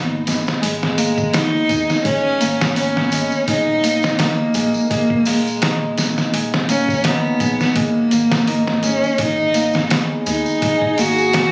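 Hypnotic and brooding, this trip hop fragment is led by a rich, vibrato-laden bowed cello melody with tape echo, set up front over ringing, fingerpicked Celtic harp arpeggios that carry sampler grit and tape echo. A muffled, pitched-down sampler-style drum kit with a thumpy kick joins a tambourine at 0.3 seconds, while a round dub sub bass sits deep in the background and a tense, string-like drone with built-in reverb slips in at 10.0 seconds. The swung groove moves between G#madd9 and D#sus4, and the mix carries vinyl crackle, light reverb and compression, captured on a phone in the room.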